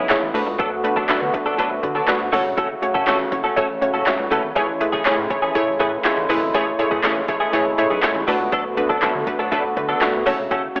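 An analog pluck, a clean direct-recorded electric guitar riff, a hand-pumped harmonium and a thick, saturated sub bass open this euphoric, carefree dance-pop excerpt, with a deep house drum kit of deep kick, punchy snare, handclaps and metallic hats, overdriven and re-recorded in a large room, arriving at 0.1 seconds. The detuned sawtooth pluck sits up front with a filter sweep and chorus, the picked, compressed guitar shimmers with ensemble chorus, and the reedy, nasal harmonium breathes its sustained chords in the background, while the pluck, harmonium and sub bass pump to the sidechain. Over chords moving through D6, F#m and Amaj7, the recording is bathed in a lush hall reverb and has a worn, warbling cassette quality with pitch drift and a telephone-like tone.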